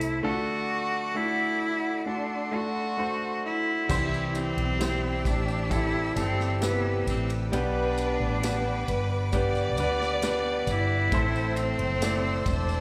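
A clear, focused cello carries the tender melody of this emotional pop ballad with vibrato and a plate reverb and slapback echo, sitting up front beside an intimate concert grand piano, audible action noise and long sustain included, and a round, hollow-body fretless electric bass. A soft-attack studio string section holds sustained chords in the background over a D, C, G, Am progression. Behind them, a modern drum kit with bright cymbals and a punchy kick plays in a straight 4/4, and at 3.9 seconds a lush violin section adds a second line while a jingly tambourine enters, all heard as a live gig through a club PA.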